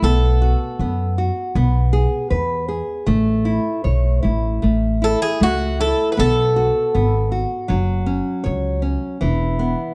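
Bouzouki, nylon-string guitar and upright bass begin together in this mournful, longing fado-style ballad. The piece is in A major at 79 BPM in 2/4, with a rubato feel. The bouzouki carries the melody with bright, metallic picked double strings, some doubled at the octave. It sounds briefly at the opening, falls away at 1.1 seconds and returns from 5.0 to 7.3 seconds. Beneath it, the fingerpicked classical nylon-string guitar supplies a warm accompaniment that runs the full length. The pizzicato upright bass adds a woody, thumpy low end on steel strings. All three sit up front under close, detailed microphones with light reverb, moving through chords such as B5, E/B, A and A6 in this passage cut from a longer piece.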